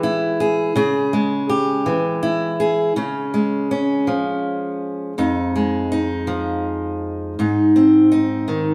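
A stone room wraps this short cut from a longer piece in a wet reverb with a 1.3-second tail, captured live in a single space. It is a folk piece for solo fingerpicked steel-string acoustic guitar, sitting up front with a warm, concert-ready tone and audible finger squeak as the hands move. The feel is anthemic and hopeful, moving at a slow 54 BPM counted in dotted quarters within a straight 6/8. The guitar spans F2 to Ab4 and is tuned slightly high, with A4 at 443 Hz. It opens on Dbm, brightens to Db at 3.0 seconds, then passes through Fm7 before settling on Ab at 7.4 seconds, where the 8.7-second fragment ends.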